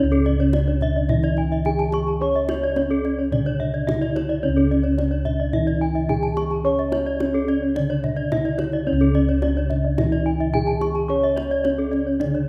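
Set in a moderate concert hall with a 1.8-second reverb, this short excerpt of Balinese gamelan rings out brilliant and shimmering at 108 BPM in a straight 4/4, tuned to a C# pelog scale. The melody sits on a bronze metallophone struck with padded disc mallets, mellow and soft, its paired tuning producing shimmering beats with a boxy, small-room character. Beneath it, a second metallophone carries the accompaniment in a dark, smooth register from C#3 to C#4, while bossed gongs hold the bass, round and beating under padded beaters, mid-forward and up front. Two more metallophones spin arpeggios up high, both struck with horn mallets and bright with paired-tuning beats: one airy, the other close-miked, dry and full, reaching down to A4-40c. A tight kendang played with soft hands sits in the background, and all parts play together across nearly the whole 12.5 seconds.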